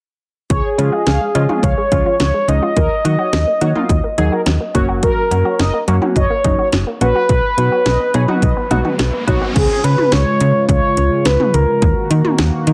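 Heavily compressed with a radio sound, and a moderate plate reverb lending a digital ambience, this wistful, nostalgic synth-pop excerpt moves at 106 BPM in a straight 4/4. A horn-like synth lead carries the melody up front, its sawtooth tone round and vintage with vibrato, chorus and tape echo, while a darker, brassy synth line sits in the background behind it. A nasal analog pluck adds arpeggios, and detuned analog keys with a filter sweep fill in the accompaniment. Underneath, a snappy FM bass with a metallic attack and a punchy, layered house kit of cracking snare, metallic hats, toms and crash drive the groove, both up front. The harmony cycles through C#, D#m, F# and B; an electronic riser builds from 8.4 s, and at 9.6 s a shimmering, warbling pulse-width pad takes over with sustained chords as the bass and drums carry on to the cut, the lead dropping out shortly before.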